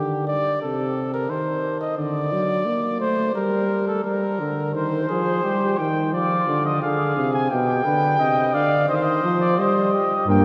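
Drenched in long cathedral reverb with a dark production, this cut-off passage from a classical brass canzona in C minor moves at 87 BPM in a straight 4/4, its mood contemplative yet driving. A mellow, close-miked trumpet with light vibrato and a smooth-topped euphonium play together from the start, and a distant, roomy cornet with a warm tone takes the melody at 4.7 s. A dark bass trombone sounds a single low note at 10.3 s, just as the passage breaks off.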